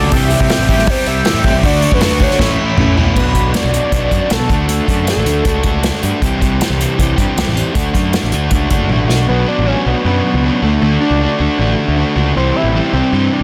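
A screaming, gritty synth lead carries the melody over two overdriven semi-hollow guitar riffs, a fuzzed, punchy picked bass and an up-front acoustic kit played with bundle sticks in this upbeat, wistful indie rock excerpt in D major at 157 BPM, with a reedy accordion line in the background for the opening 2.9 seconds, drum fills at 2.4 and 8.9 seconds, the drums stopping at 9.2 seconds, and a dry, dense, heavily limited mix.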